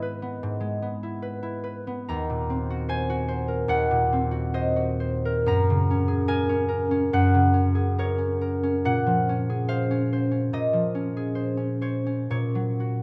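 A ringing concert harp plays alone and up front across the full 13 seconds, fingerpicked and spanning Eb2 to Bb5 in a wistful, gentle classical passage in Eb dorian. The pulse sits around 71 BPM in 4/4 but moves with uneven, rubato timing, drifting through rich chords such as Ebm6, Gbadd9 and Bbm9 before resting on an unsettled Bb7(#5) with its third omitted. A moderate concert hall reverb of 2.2 seconds and a dark, warm production surround this short fragment of a longer piece.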